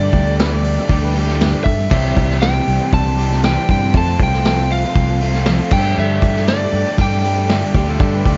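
Folk rock with a heartland rock drive, this open-road, jangly excerpt at 118 BPM in 4/4 moves through Gsus2, Cadd9 and F over a punchy, up-front fingered electric bass and a vintage drum kit with dark cymbals that joins at 0.1 s. A dark, slightly broken-up lead guitar carries the melody, a bright jumbo steel-string acoustic guitar is picked in the background, a biting, double-tracked overdriven guitar plays a riff, and a gritty amplified harmonica with tongue slaps adds a second line at 0.4 s and again at 7.8 s, all four of these trailing dub echo. A lush, very quiet bowed string section holds sustained chords, all in a small, echo-heavy room with a rolled-off top.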